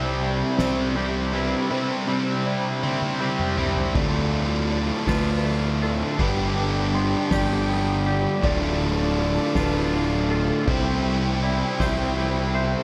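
A slow, straight 6/8 pulse at 54 BPM in dotted quarters carries this brooding yet cathartic post-rock fragment in D dorian, where a bright overdriven electric guitar riff and a punchy fuzz-drenched fingered bass sit up front, a tight distorted guitar riff adds bite in the background only until 3.9 s, a clean twangy guitar plays tremolo-and-delay arpeggios, a felt-muted upright piano with audible action noise adds mellow, intimate delayed arpeggios, a very quiet earthy chamber string section holds bowed chords with light vibrato, and a very quiet soft-mallet drum kit with a boomy kick and fat snare enters at 0.2 s and builds through a drum fill from 2.8 to 4.0 s, all bathed in a lush, dreamy hall reverb as the harmony moves from Cadd9 through Dm, G and back to Dm before landing on C.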